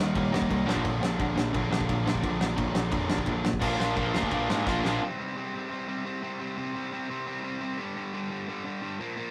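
A rough rehearsal-room sound with warm saturation and light reverb frames this angry, urgent punk rock excerpt in C minor, charging along at 173 BPM in a straight 4/4. Three electric guitars open together on riffs: a bright, scooped, distorted one sits up front, a double-tracked overdriven one adds bite, and a warm, compressed overdriven guitar joins them. A growly, punchy picked bass with a direct, modern edge drives underneath, while a loose acoustic kit with a pumping room, dark cymbals, a medium-tuned snare and a punchy kick hits crash, ride, snare and kick, its top end rolled off. The chords move from Eb to Bb before a drum fill at 4.7 seconds, after which the band drops away and the up-front distorted guitar plays alone from 5.0 seconds on C5 and then G5 power chords until the cut at 9.3 seconds.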